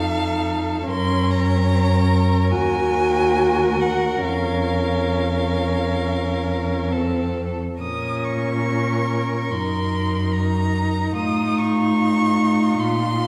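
Heard from further back in a wet recital hall, this 13.3-second fragment of a slow, elegiac and yearning romantic string quartet movement drifts in rubato 4/4 around 66-76 BPM, with a close, expressive first violin singing the melody with vibrato and portamento over a smooth, even second violin line, a dark, soft-attacked viola accompaniment that also slides expressively, and a rich, focused cello bass sitting up front.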